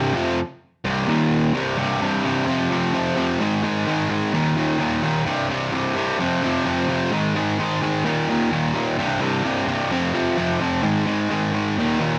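A straight 4/4 rock pulse drives this menacing fragment, cut from a longer piece, carried entirely by a cranked stack electric guitar that is bright, overdriven, picked and double-tracked, sitting up front in the mix. After a brief opening on C5 and Eb5, the guitar settles at 1.6 seconds into a repeating cycle of C5, F5, Ab5 and Eb5 power chords, ranging from C2 to Ab3. A moderate studio reverb gives the driving riff a sense of room.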